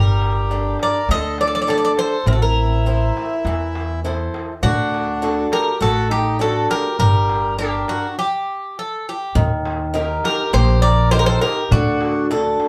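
Bittersweet and brooding, this short excerpt of Greek folk from a bouzouki band moves at 102 BPM in G harmonic minor, with an up-front metallic bouzouki carrying the melody over a reedy, dark accordion second line, a boxy, woody old ladder-braced guitar picking the accompaniment, a growly pizzicato upright bass, and a crisp metal-shell darbuka sitting distant in the background from 0.2 seconds, all set in a wet studio ambience heard from further back in the room, with a stop at 8.2 seconds before the music resumes and closes on Eb and D chords.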